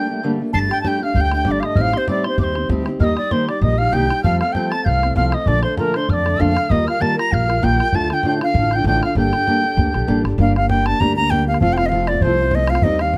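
Lightly reverberant and spirited, this driving Celtic reel in G minor moves at 195 BPM with a gentle swing, cut from a longer piece. A bright, reedy wooden flute carries the melody up front with crisp attack and vibrato, while a mellow, hollow tin whistle adds an airy, chiffy second line above it until 10.2 seconds, all over a fingerpicked archtop guitar's warm accompaniment. From 0.5 seconds a dark, thumpy pizzicato upright bass on gut strings and a tight, damped bodhran join in, and the tune turns to a new section at 10.4 seconds.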